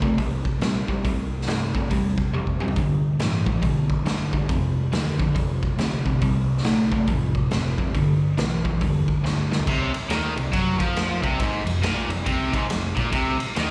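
Raunchy and gritty, this swung blues rock power trio and southern rock excerpt from a live club gig pairs a bright, overdriven, double-tracked cranked stack guitar riff up front with a dark, round, foam-muted vintage picked electric bass in the background and a saturated raw garage drum kit with punchy kick and rolled-off top, which plays fills at 2.3 and 9.2 seconds, the second leading into a shift to minor chords at 9.7 seconds, all heard through the venue's PA with moderate club reverb.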